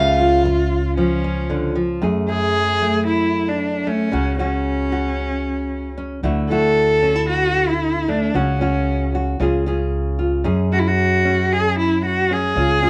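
Light reverb and a small-room ambience frame this intimate, reflective acoustic folk passage in F# minor, cut from a longer piece and moving at a straight 114 BPM in 4/4. A dark, full-bodied nylon-string guitar is fingerpicked with an audible finger squeak, and a woody pizzicato upright bass sits low beneath it. Up front, a single bowed cello sings with vibrato and portamento, taking an expressive solo from 2.0 s over chords that drift through F#madd9, C#sus4, Dadd9 and F#sus2.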